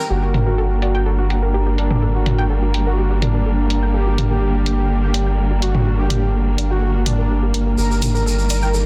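Melancholic and dramatic, this melodic techno excerpt sets a deep, round analog bass up front beneath lush bowed symphonic strings holding sustained chords, a warbling, nostalgic lo-fi pad with chorus and reverb, bright detuned pluck arpeggios with chorus and delay in the background, and an airy supersaw melody under a low-pass filter sweep and dub echo, while a layered electronic kit of low-pass filtered hi-hats and toms re-recorded in a large room moves through its own filter sweep, and a grainy, distant tube shaker, heard briefly at the opening, returns at 7.8 s as the harmony shifts from Gm to Eb/G, inside a dense, heavily limited modern master.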